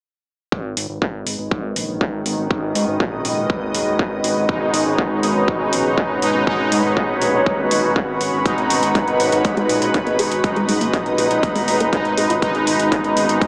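A distorted electronic kick sits up front at 121 BPM, joined at once by a fat, nasal analog bass and a very quiet, evolving drone, with filter sweeps on the bass and pad, metallic hi-hats and a lush, chorused unison pad in the background pumping against the beat. In this cinematic, melancholic melodic techno excerpt in G# minor, an ethereal, airy pad with phaser and its own reverb adds a bright shimmer, and from 4.5 s bold, brassy analog synth stabs with dub echo and vibrato come up front. The drone stops at 8.5 s and a tight, driving sequenced arpeggio enters at 9.0 s, very quiet beneath the moderate room reverb and small-speaker sound.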